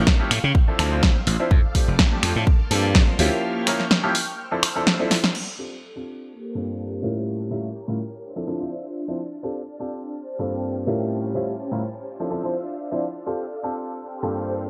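Sunny and joyful, this filtered disco house excerpt in F major moves at 125 BPM with a gentle 16th-note swing, built on jazzy chords like Dm9, F6 and Gm11 under a bright 1980s-style digital sheen. A growly, punchy glassy slap bass and an up-front electronic kick open the groove alongside a house drum kit of bright hi-hats, snaps, a punchy snare and crash, while a clear baby grand piano carries the chords and a swirling, vintage string machine with chorus and phaser pads in the background. Filter sweeps shape both halves. The bass drops out at 3.3 seconds for a break with a drum fill at 5.1 seconds, after which the kit falls away and piano and strings carry on, pumping under the sidechain.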